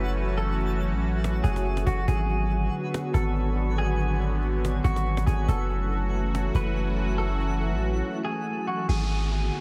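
This atmospheric cloud-rap excerpt opens with a clean, twangy electric guitar melody wrapped in spring reverb and delay, set over a sweeping, detuned sawtooth pad with chorus and a deep, sine-toned 808-style bass sitting up front. The mood is melancholic and spacious, moving at 141 BPM in 4/4 with a half-time feel in F# minor, as the harmony shifts between F#m7 and G#m7b5. A twinkling granular texture with an octave-up shimmer sparkles softly in the background, while the bright, resonant pad evolves through its filter swell. At 0.4 seconds a snappy, close and dry cajon enters, played with soft hands and carrying a snare buzz, and it drops out at 7.7 seconds, ahead of a brief break from 8.0 seconds. An electronic downlifter arrives at 8.9 seconds as the chords return to G#m7b5, all within a digital ambience that lends the piece its airy space.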